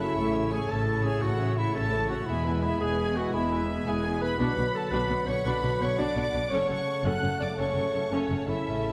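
A rolling 12/8 metre carries this determined, adventurous cut from a heroic film score, where a lush symphonic violin section sings the melody beside a dark, distant solo clarinet up front and a smooth-topped studio violin section in the background, while expressive violas with portamento, bright close-miked trombones holding chords, focused cellos and woody double basses fill out the A, E, Bm and F#m progression in a wet scoring-stage reverb.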